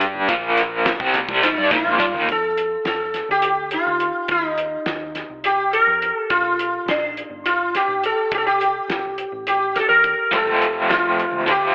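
Trippy and dark, this psychedelic rock excerpt in 7/8 at 209 BPM sets a crunchy, double-tracked overdriven guitar riff with tremolo and ringing, very quiet congas over a thuddy, cloth-damped drum kit with a fat snare and a round hollow-body bass in the background, then brings in a buzzing, shimmering plectrum-plucked sitar melody with slapback echo at 1.4 s that carries on alone over bass and drums from 2.3 s until guitar and congas return at 10.3 s, all bathed in spring reverb and a telephone tone.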